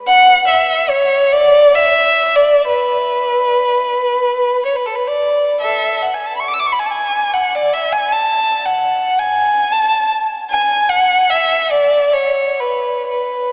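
Classical and lyrical, this serene passage of unaccompanied violin unfolds in a free, rubato 3/4 between 54 and 79 BPM, the single bowed player sitting up front with warm vibrato, expressive portamento and a smooth top, singing from A4 to E6 in a cathedral reverb with a 4.2-second decay heard through a small speaker, from 0.1 to 13.5 seconds of a longer piece.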